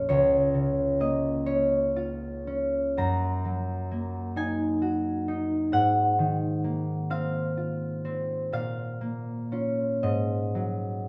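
A solo concert harp, ringing and up front with a thumb-plucked tone spanning Bb1 to Bb5, drifts through a peaceful, dreamy classical fragment in a slow, rubato 6/8 at about 43 dotted-quarter beats per minute, moving from Bbm/Db through Ebm/Gb and Ab13 to Bbm, captured by close, detailed microphones in a moderate recital hall reverb.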